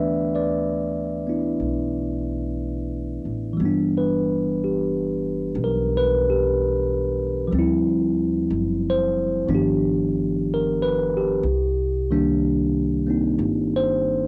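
A slow 4/4 swing at 61 BPM, with the eighth notes lilting at a 67% swing, sets the pace for this romantic, intimate jazz ballad in G major, cut from a longer piece. A bell-like tine electric piano carries the accompaniment from start to finish, its bright, clean tone sitting up front as though heard through built-in speakers, colored by cassette tape and a plate reverb. Beneath it, a pizzicato upright bass with steel strings gives a woody, acoustic foundation low in the mix, holding to a narrow range across the full 14.3 seconds. The harmony moves from G69 to G6 at 3.6 s, where a new section begins, then drifts through Dm11 and G7b13 before settling on Cm9. The whole has the close, homespun feel of a cassette recording made at home, set in a moderate studio room.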